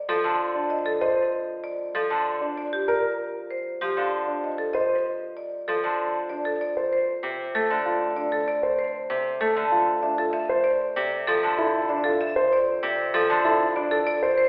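Minimalist classical pattern music with a hypnotic, propulsive pull in six, where a percussive, boxy marimba carries the melody over a bright, ringing fingerpicked Celtic harp and a dark, mellow baby grand piano whose arpeggios arrive at 0.5 seconds with audible action noise, all set in a wet recital-hall reverb yet narrowed to a telephone-like sound, in a short excerpt that drifts from F through minor and seventh colours before settling on F6.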